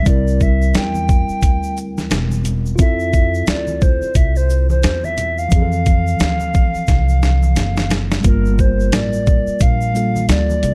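Smooth and mellow, this 88 BPM jazz-hop excerpt in F major swings gently as an airy, hollow tenor recorder with soft chiff and vibrato carries the melody over clean tine electric piano heard through its built-in speakers, woody pizzicato gut-string upright bass, a gritty, pitched-down boom bap drum kit up front with thumpy kick, medium-tuned snare, hi-hat and shaker, and tube shaker and congas tucked in the background, all moving from C7 to Fmaj7 before a drum fill at 6.9 seconds leads into a Gm9 section at 8.2 seconds, wrapped in studio reverb within a dark, warm production.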